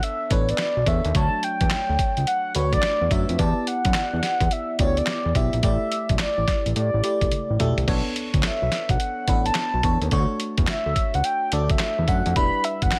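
Bouncy and slick, this swung new jack swing R&B excerpt sets a round, horn-like synth lead with chorus and vibrato up front over glassy, bell-like FM electric piano treated with chorus and phaser, a fat, saturated analog bass with a filter sweep entering at 0.3 s, and a gritty, compressed, pitched-down sampler-style drum kit with a thumpy kick, handclaps and a drum fill at 7.3 s, all cycling through Bm9, Dmaj7, Em7 and A7sus4 in a dry mix.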